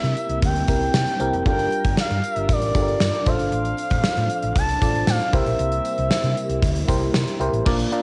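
Nostalgic and glossy, this 1980s-style pop excerpt sets a smooth sawtooth portamento lead with vibrato up front over glassy, bell-like FM electric piano, a mellow organ-string pad in the background, a dark, round hollow-body bass, and a gated, polished drum kit with a tight kick and bright cymbals, while a very quiet jingly tambourine sits close and dry, the lead, piano, pad and drums carrying a cassette-tape tint within moderate spring reverb and studio ambience.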